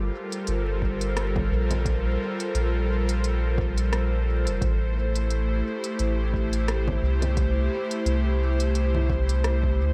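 Ambient dub at 87 BPM in G dorian, deep and hazy, with a lightly swung 16th-note feel and a bed of vinyl crackle under light reverb, cut from a longer piece. An airy, breathy pad with a warbling, detuned vintage character and chorus holds sustained chords from Gm11 to Am7 up front, beside a round, mellow sub bass. An organic electronic kit of congas, smooth hi-hat and rim click, sent through dub echo, enters at 0.3 seconds, and an overdriven, layered kick with small room ambience joins in the background at 0.8 seconds.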